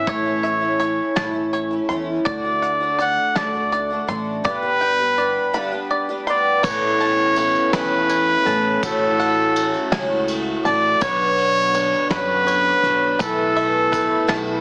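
In a slow, straight 6/8 sway, this anthemic indie folk fragment from a longer piece opens with a clear, soft-attacked classical-style trumpet melody up front, treated with digital delay, over a shimmering, octave-doubled picked twelve-string guitar with boxy old strings and analog chorus, twangy fingerpicked banjo arpeggios, thumpy pizzicato upright bass, and a dark brushed drum kit with a punchy kick. At 6.6 s the arrangement builds as a smooth-topped brass section adds sustained chords in the background and a jingly tambourine joins behind it. The whole mix sits in light studio reverb with a heavily compressed, small-speaker radio sound.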